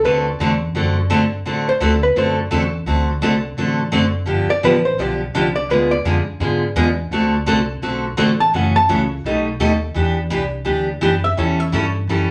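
A clean, dark hollow-body electric guitar opens this swinging, playful western swing snippet, carrying a picked solo line that sits up front from 0.0 seconds over a full-bodied steel-string dreadnought acoustic guitar and a woody pizzicato upright bass. The electric guitar's solo phrases run to 6.2 seconds, after which it returns only in brief picked fragments around 8.4 and 11.2 seconds. Beneath it, the acoustic guitar plays a warm, picked accompaniment, also up front, while the steel-strung upright bass holds down the low end at a lower level throughout. The harmony moves from D7 to G7 and a G#dim7 passing chord, then back to D7 before a turnaround through F#m7, Baug7, Em7 and A7. A lively swing feel in 4/4 and a wet studio reverb give the trio an easy, dancehall bounce, and the passage is cut from a longer piece.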